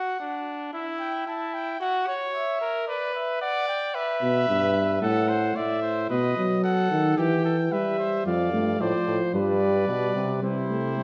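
A dark euphonium with light vibrato and a smooth top stands up front from 4.2 seconds, carrying the accompaniment in its low register beneath this imitative classical canzona for brass ensemble. The piece is in E minor at 111 BPM in a straight 4/4, with a driving yet contemplative mood. From the start, a close-miked trumpet with a warm tone and light vibrato sings the melody high in its range, while a second trumpet with a bright edge plays the second line below it. At 8.3 seconds a brilliant bass trombone enters on the bass as the music moves into a new section, where the harmony shifts from E minor toward Dm/F, G and C. The ensemble sits in a wet recital hall reverb, and the passage is cut from a longer piece.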